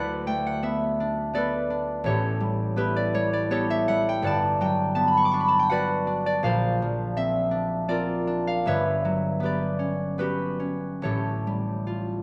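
A dark, warm recording places a solo concert harp up front in a moderate recital-hall reverb, its fingerpicked strings ringing across a range from G1 to D6. This peaceful, serene classical passage, cut from a longer piece, moves in 3/4 with a rubato feel between 68 and 85 BPM. Its harmony drifts through colorful chords such as D6, Gmaj7, Bbadd9 and Gmaj7#11 before reaching Aaug7 at 11.0 seconds.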